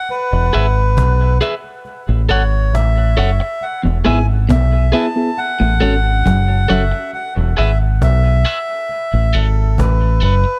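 A roomy studio reverb hangs over this deep, heavy dub reggae excerpt in F# minor at 68 BPM, cut from a longer piece and moving between E and F# minor. A dark, round fingered electric bass sits up front beneath a breathy, nasal melodica carrying the melody through dub echo, a woody cajon with faint snares in the background, and a slightly broken-up, high-passed electric guitar playing accompaniment through its own echo. The opening is a break with the kick muted from 1.9 s, and a filter sweep begins at 3.6 s; around then a clean, picked guitar riff briefly enters in the background, and a reedy, lightly overdriven electric piano adds echoing stabs from 4.1 s.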